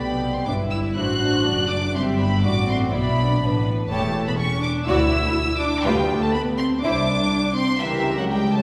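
A wet concert hall bloom surrounds this string orchestra, heard from further back in the room, in a brief cut from a longer classical-period movement in G major. The pace is quick at 122 BPM in 4/4, yet the phrasing breathes with rubato, giving the spirited, lively music a flexible lilt. High above, a rich violin section carries the melody with light vibrato and soft, sul tasto bowing, while a second violin section beneath adds a pure, floating counterline. The viola section fills the middle with intimate, vibrato-tinged accompaniment, and the bass is shared between a cello section sitting in the background and a double bass section lending a rich, pure, floating foundation. All five sections play throughout the 8.6 seconds, moving through a harmonic path that opens on G/B and closes on a rootless A13b9/C#, leaving the phrase poised to continue.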